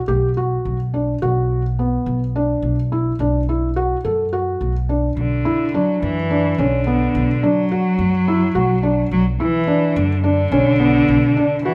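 A rich, bowed cello carries the second line from 5.2 seconds, a single player with smooth, even tone, vibrato and a polished top end, sitting up front in the mix. This urgent, restless piece of contemporary chamber music moves in an uneven 7/8 metre with a straight feel, and it is cut from a longer work. From the opening, a felt-muted upright piano plays arpeggios in its middle register, its soft, mellow, intimate sound shaped by thick felt, with the action noise of the instrument clearly audible. An acoustic upright bass plays pizzicato low in its range, woody and thumpy on steel strings, and, like the piano, enters at the very start. The harmony shifts from a rootless Esus2 over B to B minor, and the trio sits in a moderate recital hall reverb with a faint mains hum beneath it.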